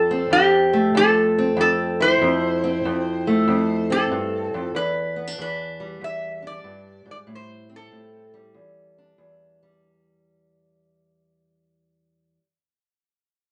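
A bright, nasal, metallic resonator slide guitar played with fingerpicks carries the melody up front in this brooding, soulful acoustic country blues fragment, cut from a longer piece, until it drops away at 8.3 seconds. Beneath it, a fingerpicked parlour steel-string acoustic guitar with old strings gives a dark, woody, boxy accompaniment with a swung 4/4 feel, moving from Fmaj7 through Em7 and Am7, and it carries on alone until 12.4 seconds. The two guitars sound as if played live together in a moderate studio room with a soft top end, and the music fades out over its first 9.8 seconds.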